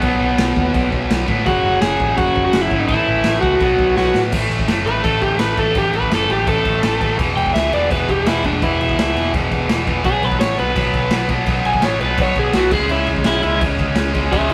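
A crunchy, overdriven lead guitar sits up front and breaks into a solo at 4.3 s after a quick drum fill, over a tight, double-tracked distorted guitar riff, a growly, amped picked electric bass and a gritty, saturated garage drum kit with a punchy kick and a pumping stone-room sound, in this rowdy, energetic punk rock clip at 168 BPM, a rough rehearsal-room recording with light reverb whose chords move from B5 through A5 and E5 to C#m.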